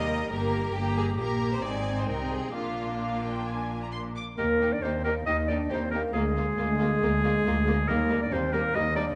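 Set in a reverberant scoring-stage space, this spirited, cheerful classical-period orchestral movement in Eb major moves quickly at 136 BPM with a rubato feel, as rich, vibrato-laden chamber strings open together, with expressive violins carrying the melody from the background over smooth second violins, distant violas, even cellos and focused double basses, until at 4.4 s a bright, soft-attacked clarinet steps up front beside an airy, hollow flute on a second line while a dark French horn section adds distant sustained chords through to 9.2 s.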